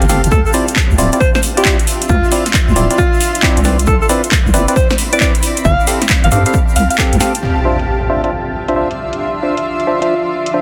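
A swung two-step shuffle drives this bouncy, moody UK garage cut, built on a punchy overdriven electronic kick and a house kit with a cracking snare, handclaps and metallic hats, with a grainy egg shaker tucked in the background. A deep, detuned wobble bass sits up front beneath hollow, chorused organ stabs and a blurred, evolving granular cloud pad that pumps against the beat over jazzy ninth chords. A mellow alto saxophone solos with vibrato and scooped notes from 0.3 seconds to 7.0 seconds, and at 7.4 seconds an electronic impact hits as a filter sweep moves over the drums.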